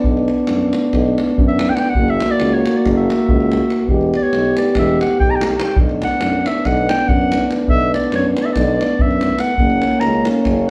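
Heard from further back in a studio with a wet reverb, this short cut from a longer Balkan brass band piece sounds restless and virtuosic. It moves at 284 BPM in eighths through a straight 9/8, in B harmonic minor, with the chords running Bm, F#, Em, Bm and back to F#. A mellow clarinet carries a classical-style solo line high above the band from the start until it stops at 10.3 s. Beneath it, a warm French horn and a euphonium touched with light vibrato fill out the accompaniment, while a tuba with its own gentle vibrato anchors the bass from a distant, roomy position. A deep, acoustic davul drives the percussion, sitting up front yet carrying the sound of a large room.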